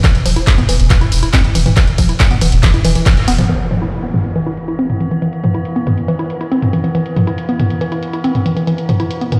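A driving, hypnotic and intense peak-time techno drop at 139 BPM opens with a woody, wave-folded pluck riff pumping against a punchy electronic kick, an up-front analog drum machine of filtered handclaps, hi-hat, ride, tambourine and toms, and a thick saturated sub bass, until the kick cuts out at 3.1 s, an electronic impact hits at 3.5 s and an eerie, metallic inharmonic drone swells in at 4.0 s, all in a lush hall reverb that sounds as if it is blasting through a big sound system in a bare stone room.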